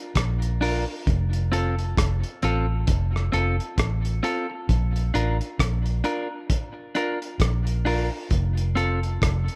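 Roots reggae at a relaxed 66 BPM in 4/4, this laid-back, sunny excerpt sits in Bb major with a swung sixteenth feel, moving between Bb and F chords. A vintage muted fingered electric bass anchors the low end from F1 to Bb1, its dark, round, punchy tone placed up front and loudest in the blend. A cloth-damped drum kit of kick, hi-hat and rim click thuds along beneath it, muffled and gritty with a tight kick and a rolled-off top that gives it a lo-fi, small-room character. From 0.6 seconds a clean, picked semi-hollow electric guitar adds accompaniment between C4 and Bb4, its hollow-body tone compressed and dressed in spring reverb and tape echo, sitting quieter than the bass and drums. The overall sound is dry and close, a short slice cut from a longer piece.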